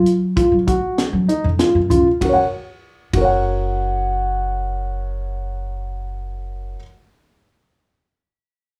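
Progressive instrumental band music in 5/4 at 98 BPM, this short fragment from a longer piece feels driving and bright, with a straight feel in F# major. A dark, mellow grand piano sits up front playing arpeggios between D#4 and F#5, its smooth, vintage tone carrying audible action noise that lends an intimate quality. An upright bass, plucked pizzicato with steel strings, gives a warm, woody low end reaching from F#1 to F#3 and sits up front alongside the piano. A tight funk drum kit with a high-tuned snare, tight kick, hi-hat and ride cymbal plays only until 3.3 seconds, leaving piano and bass to continue. The harmony moves from F#maj7(no3) to F# at 2.2 seconds, all set in a small, natural-sounding room with light reverb.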